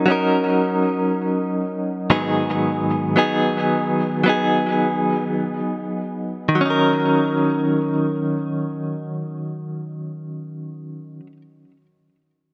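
A clean, picked electric guitar, recorded direct and compressed up front, plays alone through this melancholic, emotional pop fragment in Eb minor at a slow 51-60 BPM in 4/4. Its tone is colored by tremolo and delay and sits in a moderate plate reverb, moving from Ebm7 to Abm7 at 2.1 seconds. The tempo slows through the opening passage before a second passage begins at 6.6 seconds, returning to Ebm7.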